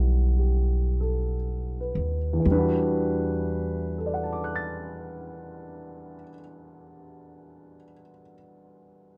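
A slow swing in four, with lilting eighth notes, opens by easing back and slowing down over the first 2.5 seconds before settling into a melancholic, wistful jazz ballad. The opening harmony is an Em9 chord, voiced on a dark, mellow baby grand piano that plays an accompanying role across a broad span of the keyboard. Beneath it, an upright bass with steel strings is plucked pizzicato, giving a woody, thumpy low end until it drops out at 6.2 seconds. The piano then carries on alone to the close at 9.2 seconds. Both instruments sit up front in a dry, close, 1970s-style studio sound with a touch of light reverb, and this short fragment is cut from a longer piece.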